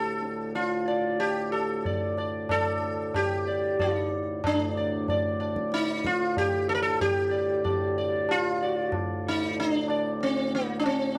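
Meditative and solemn, this short Hindustani classical excerpt in raga bhairavi on D moves at 93 BPM in a straight 4/4, with an up-front, buzzing sitar carrying the melody from Bb3 to D5 amid shimmering sympathetic strings, a reedy, breathing pedal harmonium holding a low drone beneath, and a low-tuned, compressed tabla entering at 0.2 seconds, all captured in a dry, close 1970s-style small-room studio sound before a new section begins at 4.4 seconds.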